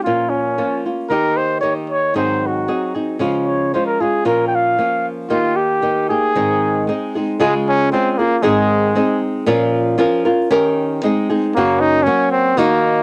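A straight 2/4 pulse at 114 BPM carries this romantic, proud mariachi excerpt, moving from Ab major into Db major at 7.4 s. A mellow trumpet sings the classical-style solo melody with light vibrato, pausing at 9.2 s and returning at 11.5 s, while a fingerpicked acoustic flamenco guitar accompanies throughout, its finger squeaks audible. Both instruments sit up front with a cassette-tape tint in a moderate booth ambience, giving the home recording an intimate, slightly worn character.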